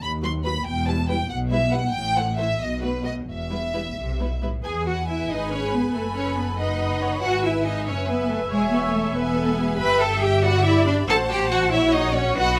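Lightly reverberant and restless, this stormy excerpt from a quick classical-period movement for string orchestra moves at 93 BPM in a rubato 6/8, as a rich, smooth chamber violin section carries the melody over a focused cello section and an up-front double bass section with a soft attack, while a clear second violin line and dark, woody violas fill in from 0.2 s, the music turning from E minor to E major at 4.7 s.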